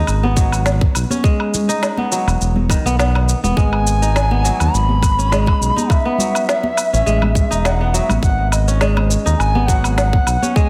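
Earthy and hypnotic, this short cut from a longer organic downtempo piece moves at 103 BPM in 4/4 with a light sixteenth-note swing, sitting in G# minor as the chords shift between G#m7, Emaj7 and Amaj7. A bright, crisp kora plays ringing fingerpicked arpeggios through a digital delay, while a smooth, saturated synth bass with a fast attack sits up front and pumps against the sidechain. The electronic kick is tight and tape-toned, placed forward in a small room, joined by an overdriven kit of electronic woodblock, shaker and woody snare, with close acoustic congas ringing in the background. At 3.6 seconds a reedy bass bansuri enters with a pure, bamboo-like tone, gentle vibrato and rolled-off highs, its melody trailed by delay. A moderate recital-hall reverb wraps the mix, and the master is dense and heavily limited in a modern style.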